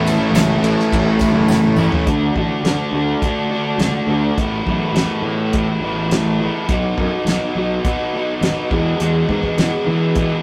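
A stack of overdriven electric guitar riffs opens this short, sunny, swaggering classic rock excerpt, with a faint jingly tambourine and a damped 70s drum kit coming in almost at once. Up front, a crunchy guitar carries its riff through the whole passage with a touch of spring reverb, while a biting guitar and a double-tracked crunchy guitar sit in the background and drop out at 2.1 seconds, just after a drum fill. A fuzz-driven, growly fingered bass punches underneath, bright and overdriven. The drums are dry and fat-snared, with a tight kick and dark cymbals, and hi-hat, ride and toms also appear. The harmony moves from A to D, then through Asus2 and B before landing on E, all captured in a rough rehearsal-room sound with stone-room reverb and tube saturation.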